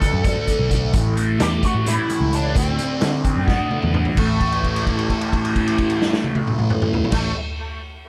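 A bright, double-tracked fuzz guitar riff with distortion and phaser drives this hypnotic, mysterious psychedelic rock piece in 7/8 at 260 BPM (eighths) in A dorian, set over punchy, rolled-off acoustic drums in a pumping small room, a round, foam-muted picked bass, a dark, lo-fi lead guitar melody through a small cranked amp with wah, overdrive and tape echo, and very quiet, low-tuned congas ringing distantly in the first half, as power chords move between D5 and A5 and a drum fill at 3.5 seconds gives way to a held note at 4.2 seconds.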